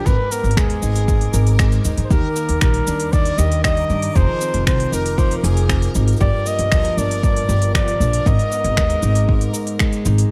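A dark, lightly reverberant production with a digital ambience frames this hopeful, pastoral folktronica piece at 117 BPM, cut from a longer work and moving through Abmadd9, Ebmaj7, Fm7 and Gm7 before returning to Abmadd9. A close-miked, jazz-style flugelhorn carries the melody with vibrato and delay, while a fingerpicked nylon-string guitar plays full-bodied arpeggios, with audible finger squeak, roughened by vintage 12-bit sampler grit and echoing delay. Underneath, a woody, thumpy pizzicato upright bass and a deep, tape-warm electronic kick anchor a tape-warm electronic kit of finger snaps, smooth hi-hat and shaker, while a dreamy, reversed granular texture swells brightly in the background.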